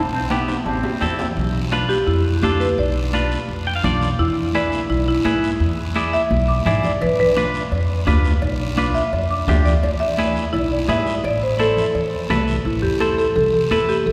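A woody marimba and an up-front, growly pizzicato upright bass open this passionate, danceable cumbia excerpt at 170 BPM, joined briefly by a very quiet, airy bass recorder with chiff and by ringing timbales and cowbell that return in the background at 7.0 s, while a twangy, clean picked electric guitar, soft high-tuned congas and a raspy guiro carry the groove under a marimba solo from 1.4 s, all washed in a cathedral reverb.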